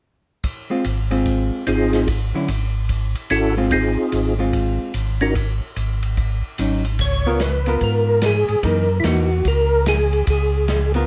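A percussive tonewheel organ carries the melody from 1.7 seconds in this greasy, soulful soul jazz organ trio, its round tone sparked by third-harmonic percussion and shaded by chorus vibrato and a slow rotary speaker. A second, mellow tonewheel organ holds down the bass with the same chorus and slow rotary sound, while a clean, picked hollow-body archtop guitar comps up front and an airy acoustic kit in a small room adds ride, hi-hat, snare and a boomy kick. Light reverb frames the dark, warm, swinging production in this excerpt from a longer piece, and the harmony moves into a new section at 7.0 seconds.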